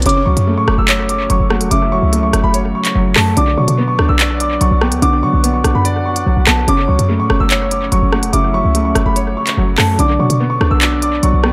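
Drill hip hop at 145 BPM in a menacing, tense half-time feel in F# minor, this excerpt from a longer piece sets a dark concert grand piano melody high above a soft felt-muted upright piano, both soaked in dub echo, while a punchy, tight 808-style bass and a crisp, up-front drill kit of handclaps, hi-hat and rim click drive the F#m to Bm changes, a round, octave-layered synth lead with chorus and vibrato adds a second line in the background, and a very quiet, ethereal FM pad joins at 0.8 seconds with glassy sustained chords inside a heavily echoing digital ambience.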